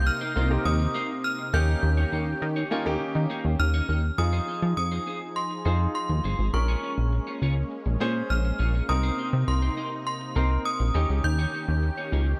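Driving and energetic, this pop excerpt moves at 102 BPM in a straight 4/4 feel in F minor, cut from a longer piece. A chorused synth bass sits up front, its retro, glossy tone built from detuned sawtooth and pulse-wave layers with pulse-width modulation, a fast filter pluck and a mellow sustain. Above it, a clear baby grand piano supplies polished accompaniment, while a lush unison pad holds thick, warbling chords with a slow attack, long release and a bright vintage sheen. A synth chime carries the melody high in its range, its FM tone inharmonic and ringing, decaying under an ensemble chorus, and a clean, dark electric guitar plays a fingered, compressed riff through lush chorus from 0.1 seconds. The harmony moves from Cm7 and Eb7 into a second section at 4.2 seconds built on Fm7, Bbm7, Cm7 and Eb7, all captured in a dry, gritty hardware recording with little reverb.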